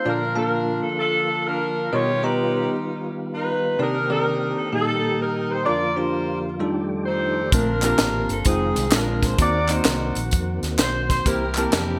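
A mellow saxophone section carries the melody in this uptempo gospel passage, with light vibrato and a distant, roomy jazz sound that still sits up front, while a bell-like tine electric piano plays bright, clean accompaniment through analog chorus and a tonewheel organ holds smooth sustained chords through a slow rotary speaker, its key click audible. The harmony moves through rich extended chords, from Bbmaj7 through G7alt/B and Cm9 to an F13, giving the soulful, hopeful mood a lush lift. At 7.5 s the rhythm section arrives in a swung 4/4: a tight funk drum kit, dry with a high-tuned snare and gated reverb, a round, amped fingered electric bass, and tambourine with group handclaps tucked into the background. The saxophones carry a digital delay, and the whole mix has a bright 1980s-style digital polish with moderate plate reverb. The passage is cut from a longer piece, ending on a C7 that points onward.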